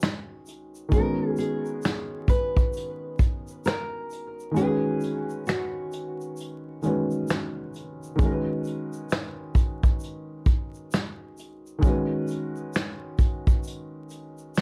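Hazy and melancholic, this lo-fi hip hop excerpt swings gently in 4/4 over a vintage brush drum kit, up front with a tight kick, medium-tuned snare, hi-hat and finger snaps, while a grainy tube shaker sits in the background and a felt-muted upright piano, soft and intimate with audible action noise and a cassette-tape character, opens on a C#9sus4 and carries the accompaniment throughout. A fingerpicked nylon-string guitar carries a classical-style melody with tape echo from 0.9 to 7.7 seconds, and the kick drops out between 4.6 and 8.2 seconds. The production is dark, with light reverb, vinyl crackle and a faint mains hum.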